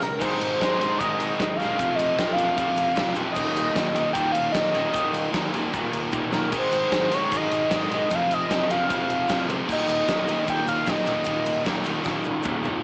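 A screaming, gritty synth lead carries the melody up front, its saturated sawtooth tone sounding almost guitar-like, sustained and colored with chorus and vibrato. Beneath it, two biting overdriven electric guitars play a riff from 0.2 seconds on: one dark and forward, the other warm and set back, treated with ensemble chorus and analog delay. A big rock drum kit with a fat snare, punchy kick and bright cymbals drives a straight 4/4 feel through a cassette-tape coloring, with fills at 6.1 and 12.1 seconds. A growly picked electric bass sits in the background, and a grainy egg shaker is barely audible. The harmony cycles through Ab, F5 and Eb5 twice in this wistful yet carefree indie rock passage, cut from a longer piece. Light reverb and a homespun cassette, small-speaker character shape the overall sound.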